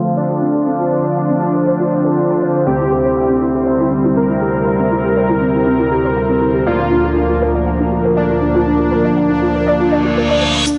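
A lush, airy pad of sustained chords opens this hypnotic, melancholic melodic techno at 120 BPM, joined at once by a warbly, dusty pluck arpeggio under a filter sweep in the background and edgy, nasal polysynth stabs, while the harmony moves from F/D through C/D to Bb/D. At 0.2 s a smooth, evolving supersaw melody enters up front through a low-pass filter and analog delay, and a reverse cymbal and riser rises at 9.9 s before a faint electronic shaker slips in at 10.7 s. The cut has the soft, muffled top of a home cassette recording and a moderate studio reverb.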